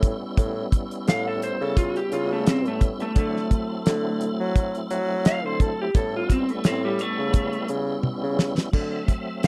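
This gritty, soulful straight-eighth soul blues moves at 86 BPM in 4/4 with a light sixteenth-note swing, cycling between A7 and D7. A fat-snared, tight-kicked 70s drum kit sits up front alongside a bassoon with a light, classical-style vibrato carrying the bass line, while a lightly overdriven tonewheel organ with slow rotary speaker and chorus vibrato fills in the accompaniment. A picked, slightly broken-up, lo-fi electric guitar with slapback echo plays the melody from 1.1 to 7.7 seconds, and a drum fill at 8.0 seconds closes this dry, close, 1970s-style studio fragment.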